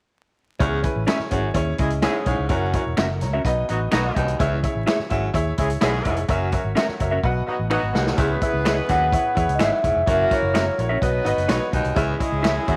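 A mellow, ringing vibraphone played with soft mallets takes the melody at 8.9 seconds in this passionate, urgent excerpt of uptempo 1960s-style soul at 127 BPM in C# minor, driven by a bright, up-front grand piano, a round, dark fingered electric bass, a swinging big-band drum kit with a punchy kick and a fill at 7.2 seconds, a distant, roomy baritone saxophone riff with subtone, slightly broken-up lo-fi guitar stabs through a small old amp, very quiet close finger snaps, and a tight, clear horn section with octave doubling entering at 1.8 seconds, all set in light reverb, small-room ambience and vinyl crackle.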